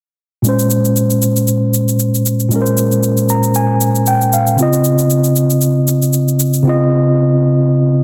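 A mellow, clean tine electric piano sits up front and plays a fill from 3.0 s in this hypnotic, late-night amapiano excerpt in Bb minor at 116 BPM with a gentle swing, moving from Bbm9 to Dbmaj9 at 4.6 s over a layered electronic shaker that drops out at 6.6 s, all set in a moderate plate reverb with a dense, heavily limited modern master.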